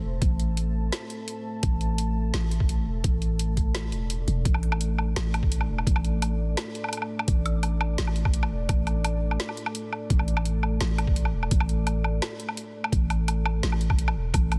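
A dense, heavily limited modern mix with light reverb opens this spacious, cinematic half-time drum and bass excerpt, built entirely on a single minor chord. A growling, buzzy 808-style bass sits up front beneath a deep, moody ambient pad of detuned sawtooth voices that holds sustained chords with chorus, its own reverb and sidechain pumping. From 0.2 seconds a gritty, thumpy, pitched-down electronic kick with a tape-warm grit joins a layered electronic kit of woody snare, bright hi-hats and woodblock, re-recorded in a small room.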